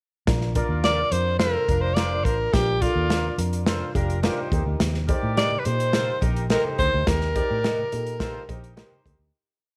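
Uplifting and joyful, this short uptempo 1960s-style soul piece in Bb major at 106 BPM sets a bright, up-front alto saxophone singing motif-based song phrases with vibrato over a driving acoustic drum beat with the snare on all four beats, a round, foam-muted electric bass line full of slides and chromatic approach notes, a dark, boxy grand piano pulsing eighth-note chords, tight short horn riffs, twangy lo-fi guitar chops on the backbeat with spring reverb and tape echo, and a very quiet syncopated conga groove joining at 4.8 seconds, as the whole thing moves from Bb to Eb and fades out from 7.1 seconds in a small, lightly reverberant room.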